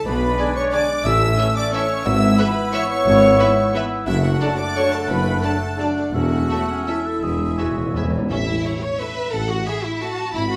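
Elegant and sweeping, this orchestral ballroom waltz in A major sways in 3/4 at 156-193 BPM with a rubato feel, heard as a short cut from a longer piece. A close, lush violin section carries the melody from 0.4 s, while a second, more distant violin section with a soft attack shares a second line with a very quiet, pure flute ensemble, a roomy oboe in the background and a smooth-topped clarinet. The French horn section, the most prominent voice, holds sustained chords with light vibrato, supported by a very quiet dark trombone section and soft, distant stabs from a dark trumpet section. Underneath, a mellow bassoon and a dark, very quiet viola section fill the accompaniment, and the bass is built from a cello section with expressive portamento, an even double bass section and a mellow, roomy tuba. Timpani struck with hard mallets on calf heads sound close and articulate, marking the A chord at 1.1 s and playing a fill from 7.2 s that leads into a brief new section at 8.3 s. 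There the strings and tuba carry on while the timpani rings on until 8.8 s, all set in a stone room reverb.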